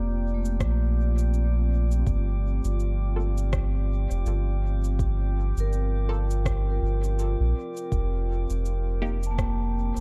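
A dry, close-sounding mix carries this deep, spacious ambient dub fragment, cut from a longer piece and resting on a single Fsus4 chord with a gentle swing. A round, soft sub bass sits up front beneath a moody, detuned sawtooth pad with chorus and built-in reverb, while a ringing vibraphone played with medium mallets, motor off, spins arpeggios through dub echo, and a glassy texture of drifting overtones hovers faintly on a single G4. An overdriven electronic kick stays in the background from 0.6 s, overdriven cabasa and rim click with dub echo begin at 0.5 s, and a muted chord stab with a filter pluck and phaser enters at 3.2 s.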